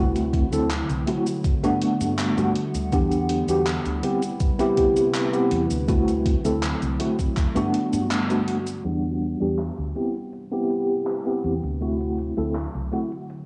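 Vaporwave at 81 BPM in A dorian, nostalgic and woozy, where a worn, slightly out-of-tune tine electric piano with tremolo, chorus, delay and 12-bit sampler grit sits up front over a warbling, detuned tape-like pad, a round, woody fretless bass with tube saturation, and a gated, overdriven 80s drum machine of cabasa, handclaps and muffled hi-hat, joined by a thumpy electronic kick that stops at 7.5 s, before a brief band accent and a filter sweep across the pad from 8.9 s, all soaked in spring reverb and cassette haze.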